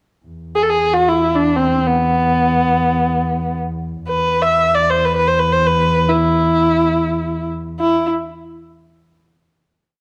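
Persian modal ensemble music in free time in E dastgah homayun, stately and passionate, where a warm, up-front bowed kamancheh sings an ornamented modal melody from B3 to E5 with vibrato and portamento over a veiled, muted double bass drone on E2, both held in a dark production with moderate recital hall reverb before a final note rings from 7.8 to 9.7 seconds.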